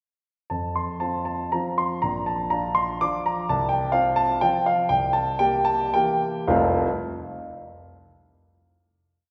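A rubato waltz in 3/4, moving between 102 and 136 BPM, gives this brief classical piece in F major an elegant, playful lilt. A solo grand piano with a natural, up-front tone carries a single-line melody over a waltz bass, ranging from F1 to D6 between 0.5 and 6.9 seconds and settling on a final F chord at 6.5 seconds. Generous concert-hall reverb with a 2.1-second decay lets each phrase bloom into the room.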